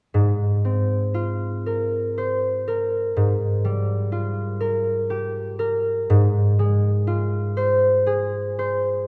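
A lone concert harp, acoustic, ringing and up front, plays accompaniment across a register from Ab2 to C5 in this dreamy, pastoral classical excerpt in Ab major, moving in a rubato 3/4 at 61 BPM through Ab69, Fmadd9/Ab and Ab6 harmonies, its tuning set to A4 = 435 Hz and bathed in the lush reverb of a concert hall.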